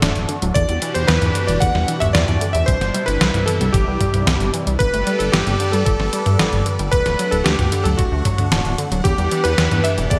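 A straight 4/4 pulse drives this nocturnal synthwave excerpt, anchored by a detuned 8-bit drum machine sitting up front from the start, its medium-tuned snare, hi-hat and toms carrying gated reverb in a small room, with a thumpy electronic kick joining at 0.6 seconds. Beneath the drums, a chorused synth bass blends pulse and sawtooth tones with pulse-width modulation, sounding glossy, saturated and mellow. A swirling phased analog pad holds sustained chords with a slow attack, its detuned sawtooth layers colored by chorus, vintage 12-bit sampler grit and sidechain pumping. Further back, an analog pluck spins round, short-decay arpeggios through chorus and delay. At 0.5 seconds a cutting electric grand piano takes the melody up front, vintage and clangy with chorused unisons, long sustain and delay. A lush hall reverb and bright 1980s-style digital production bind the driving track together over chords moving through Em7, Cmaj7, Gadd9 and D.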